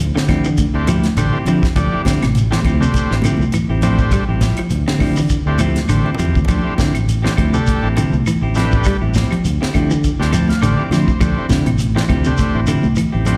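A driving, funky afrobeat groove at 102 BPM in 4/4 with a light sixteenth-note swing sits on a single D minor eleventh chord, with a tight, dry funk kit up front, its snare high-tuned and airy, while round fingered bass, bright high-tuned congas, grainy shekere and woody claves in the background fill out the rhythm. Two clean picked electric guitars join in, one playing arpeggios in the background with tape echo and the other adding stabs with slapback echo, as a buzzy vintage combo organ with light vibrato enters at 0.7 seconds. A drum fill lands at 5.8 seconds and the organ takes a fill at 10.0 seconds, all heard as a live gig through the venue's PA with recital-hall reverb in this excerpt cut from a longer piece.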